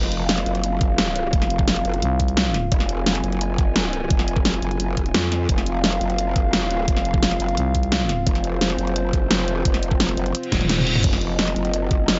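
A moody, mechanical slice of dark technical drum and bass at 173 BPM in F phrygian opens with a deep, nasal analog pad holding sustained chords under a sidechain pumping pulse, a detuned, wobbling growl bass up front and an electronic drum kit with a huge snare. An overdriven, knocking kick joins at 0.8 seconds, while a thick FM bass growls in short bursts starting at 2.0 seconds. A reverse cymbal and a drum fill arrive together at 10.5 seconds, all in a dry, close mix with a muted top end.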